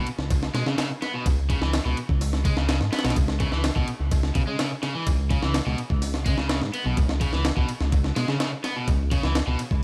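Energetic and raw, this breakbeat excerpt runs at 126 BPM in C# minor, resting on a single C#7(no3) chord. A gritty, pitched-up sampler-style drum kit sits up front with a thumpy kick, high-tuned snare, hi-hat and ride, coloured by studio reverb and analog delay, while a dark, detuned saw bass rumbles and beats beneath with tube saturation. A bright, crunchy overdriven guitar picks a riff through analog delay until 9.6 s, all inside a dry, echo-heavy mix dusted with vinyl crackle.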